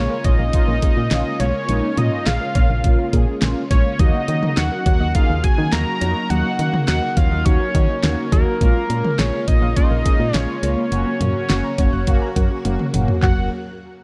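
Synth-pop at 104 BPM in straight 4/4, upbeat and bright, cut from a longer piece and moving through A#m7, D#m7, back to A#m7 and on to F#. A fat, warbling analog lead carries the melody with detuned sawtooth and square-wave layers, a sub octave, vibrato, chorus and tape echo. Beneath it, mellow synth brass plays brassy, evolving accompaniment with a filter sweep, chorus and phaser. A vintage string machine holds shimmering violin chords in the background, with a slow attack and ensemble chorus, while a very quiet, gentle pluck ripples through arpeggios. A punchy, round FM bass with a fast, decaying attack anchors the low end, and an up-front electronic pop kit with a knocking kick, fat snare, hi-hat, handclaps and cowbell drives the groove, rolling through a drum fill from 12.6 to 13.2 seconds. The production is dark, set in light reverb and digital ambience.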